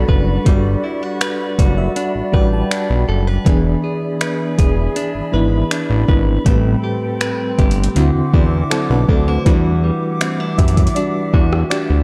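Contemporary R&B at 80 BPM in 4/4, romantic and dreamy, this 12-second slice of a longer piece moves through Gmaj7, E7, Am9, D9 and Em9 over a thick, detuned sawtooth analog bass with a fast pluck and an up-front electronic drum kit of soft kick, metallic hi-hat, rim click and finger snaps set in a large room. A tremolo-laden FM electric piano with a noise layer accompanies throughout, adding fills at 1.2 and 8.3 seconds before taking a solo from 9.5 seconds, while a clean, compressed, direct-recorded electric guitar picks arpeggios through digital delay. An airy large flute ensemble with vibrato and lifted highs holds sustained chords, all within a dark production touched by light reverb.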